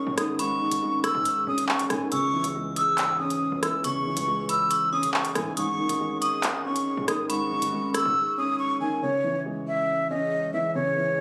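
Hip hop drill in a dark, cold half-time feel, where a breathy jazz flute carries the melody up front over a mellow grand piano and a moody analog pad treated with chorus and phaser, while a distorted 808-style bass sits in the background and a crisp electronic drum kit of handclaps, hi-hat and rim click plays alongside a metallic, inharmonic FM bell line with chorus and delay, until the drums and bass stop by 8.2 seconds and, after a brief silent gap, the flute, piano and pad close this excerpt, all captured on a phone in a dry room.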